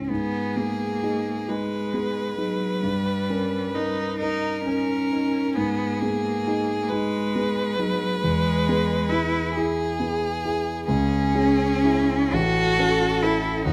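A focused, close violin carries the melody with vibrato over a clear, bowed cello second line and a dark, mellow concert grand piano with deep bass, in this melancholic, elegiac excerpt from a slow romantic classical piano trio movement in G# minor, played with rubato at 45 BPM in 6/8, with light reverb and close, detailed microphones.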